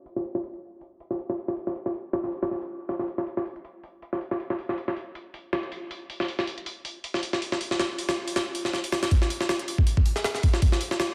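A jungle sampler-style drum kit stands up front in this nostalgic, frenetic drum and bass fragment, its hi-hat, kick drum and snare drum sounding compressed, pitched up and gritty. The kick is thumpy and the snare high-tuned, with a tape-warm character and a touch of studio reverb, all sitting on a lightly swung sixteenth-note feel in 4/4. The drums play from 0.1 seconds to the end at 11.1 seconds, and a filter sweep runs through the opening stretch before a build-up takes over at 9.1 seconds. Light reverb and digital ambience frame the kit, while vinyl crackle and a low-pass filter lend a faded, dusty tint. The master is dense and heavily limited in a modern way, and the piece is cut from a longer work.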